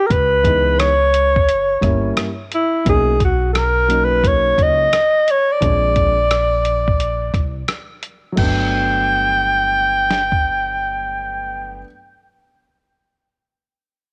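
A lazy swing on the sixteenths in 4/4 gives this relaxed jazz-hop excerpt its easy pulse, carried by a muffled, compressed sampler-style drum kit with a thumpy kick, hi-hat, rim clicks, snare and crash, which stops at 10.4 s. Up front, a breathy alto saxophone with vibrato plays a smooth, mellow jazz solo from the start, over a woody pizzicato upright bass and a dark, intimate concert grand piano whose vintage tone carries audible action noise. The harmony moves through C#m9, F#7b9, Bmaj7 and Bb9 before turning to Gmaj9 at 8.4 s, with light reverb and a small room ambience around the group.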